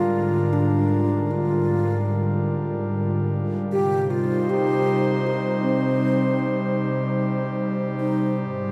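Ambient excerpt in a weightless, warm mood and a straight three-beat metre, where a detuned, chorused synth pad holds soft sustained chords under a filter sweep across its whole 8.7 seconds, moving from Gm7/Ab to Cm at 3.7 seconds. Over it, a close-miked alto flute plays a mellow, hollow melody between C4 and G4 with a straight tone and crisp attack, its line trailed by analog delay. A wet spring reverb gives the echo-heavy mix a long, floating tail.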